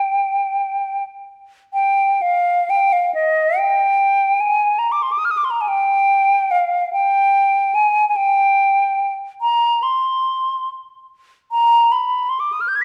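A hollow, pure-toned concert flute plays entirely alone in this lonely, meditative classical fragment, cut from a longer work. The line moves freely in a loose 6/8 with expressive rubato, ranging from Eb5 up to Ab6. Its tongued notes carry vibrato, and the flute sits up front in the mix. A brief opening phrase gives way at 1.7 seconds to a longer passage that continues to the end at 12.8 seconds. A moderate scoring stage reverb with a 1.5-second decay surrounds the flute, lending the solo a sense of open, contemplative space.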